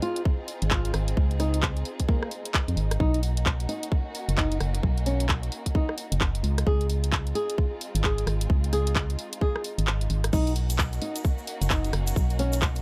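A fingerpicked flamenco guitar with fresh strings and audible finger squeak carries a dub-echoed melody over sidechain-pumped, vibrato-rich bowed violin chords and a tape-toned garage kit of handclaps, hi-hat, rim clicks and crash, soon joined by a tight, up-front electronic kick and a hollow, organ-like FM bass in this soulful, sunny two-step garage excerpt, where the kick drops out at 9.9 s and a grainy egg shaker enters in the background at 10.3 s.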